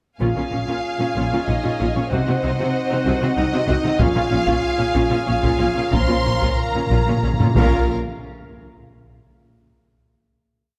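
Close, detailed microphones and light reverb give this short, heroic orchestral film cue a crisp, present sound, with a taiko ensemble struck by hard sticks pounding a big drum ostinato through the theme and into the final hit. Lush, expressive bowed violins carry the melody, doubled at the octave and in unison, over a second violin line, a driving viola ostinato, and rich cellos and double basses holding the bass, while dark, distant French horns and mellow woodwinds sustain chords in the background. Timpani enter at 5.9 seconds with a fill that leads into a final hit at 7.9 seconds, closing the relentless, epic piece.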